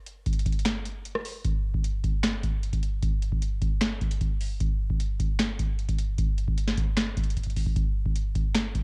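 This is a dry, lo-fi home recording on cassette, cut from a longer piece, with a dark and hard-hitting hip hop mood. A booming analog drum machine carries everything, entering at 0.1 s and sitting up front, with its sound passed through cassette tape. Its deep kick, crisp snare, rim click, finger snaps and metallic hi-hat were re-recorded in a large room. At 152 BPM in 4/4, the groove has a heavy half-time feel. A short break lands at 0.7 s before the main stretch of the beat, and a drum fill at 7.4 s breaks up the pattern just before the clip ends.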